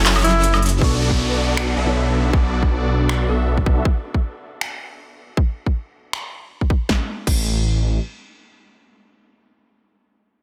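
Dry and up front, this short cut from a longer future bass track has the playful, euphoric lift of the style, running at 158 BPM in 4/4 with a swung, half-time feel. Huge, bright supersaw chords carry the riff over F#m7 and Bm7, pumping with sidechain and coloured by phaser, a low-pass filter sweep and dub echo. Beneath them a thick, detuned saw bass adds saturated, chorused weight. A punchy big-room kit with crisp hats, snaps, claps, woodblock and cymbals kicks in almost at once, and a breathy alto saxophone offers a brief jazz-style note with vibrato near the opening. At 0.8 seconds an overdriven, hard-clipped electronic kick drops in beneath the kit, while a soft, felt-muted upright piano with audible action noise murmurs in the background and a downlifter sinks beneath the mix. The chords fall away at 3.9 seconds, leaving the drums driving until the bass reappears at 6.9 seconds.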